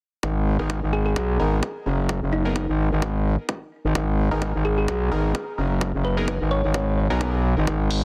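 A swung sixteenth-note groove in four drives this aggressive, swaggering bass house fragment, cut from a longer piece. An up-front, punchy, tape-warm electronic kick drum anchors the low end beside a growling, thick FM bass with overdrive and sidechain pumping. In the background, a nasal, detuned band-passed chord stab carries a phaser, digital delay, sidechain pumping and a filter sweep as it voices a minor chord with an added ninth. A round, tine-like thumb-piano-like synth pluck, mellow under lush chorus and delay, plays the melody from 0.9 to 6.9 seconds. A layered electronic hi-hat appears only at 7.9 seconds, and the dry, dense, heavily limited modern master keeps the whole track tight and close.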